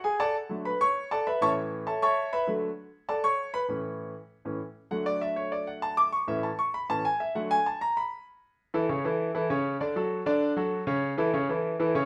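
A clear concert grand piano opens this sunny, festive Latin piece in A major, playing up front with a polished tone, deep bass and short sustain at a brisk 196 BPM in straight 4/4. Its harmony sways between D and A, with an Aadd9 colouring the second chord, while a wet studio reverb gives the feel of a band playing live in one room. The piano carries a solo passage through 8.6 seconds, where a new section begins, and this cut from a longer piece ends at 12.1 seconds.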